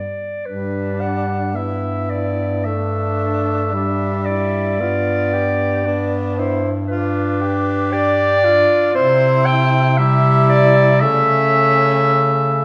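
A roomy, gently attacked clarinet carries the melody in this serene classical excerpt for single-reed quartet, its line sitting high and slightly distant yet still the most prominent voice. Beneath it, an alto saxophone with a clear tone, smooth top and vibrato sings a quieter second line. A tenor saxophone fills in the middle as accompaniment, while a warm, up-front bass clarinet anchors the lowest register. All four parts play throughout in an unhurried rubato 4/4, moving from G to G7 at 4.8 seconds, then to C at 9.0 seconds before settling on A/C#. A lush recital-hall reverb surrounds the ensemble, lending the short passage a calm, glowing space.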